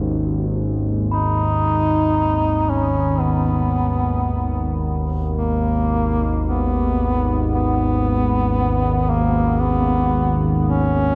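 This desolate, unsettling ambient excerpt opens at 0.0 seconds with a low analog drone and a very quiet, deep pad, joined by a single high note. The drone sits up front, a mellow, warbling sawtooth and pulse-wave tone with pulse-width modulation and chorus that gradually evolves. Behind it, the dark pad holds sustained chords built from detuned, wave-folded and ring-modulated layers, with a sub octave, soft attacks and long releases. At 1.1 seconds a duduk enters up front as a solo folk-style melody, its vibrato and scooped notes trailing through tape echo, while a very quiet bronze singing bowl adds a metallic, ringing tone with slow beating. A cavernous cathedral reverb surrounds the whole piece, giving it a haunting, meditative stillness.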